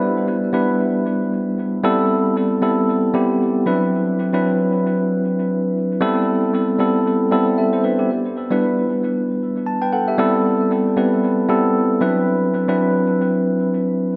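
Late-night and hypnotic, this amapiano excerpt drifts at 115 BPM in 4/4 with a gentle 16th-note swing, sitting in A dorian. A lone tine electric piano carries everything from 0.0 to 14.2 seconds, its warm, clean tone placed up front and colored by a delay, ranging from F#3 up to A5. The whole mix is soaked in a lush hall reverb with a 2.3-second tail, giving it a dreamy, floating quality. After a brief opening on G6, the drop arrives at 1.8 seconds and the harmony settles into a looping cycle of Am9, D13 and G6 chords. It is a short slice cut from a longer piece, sounding intimate and suspended, as if played through built-in speakers in a large, echoing space.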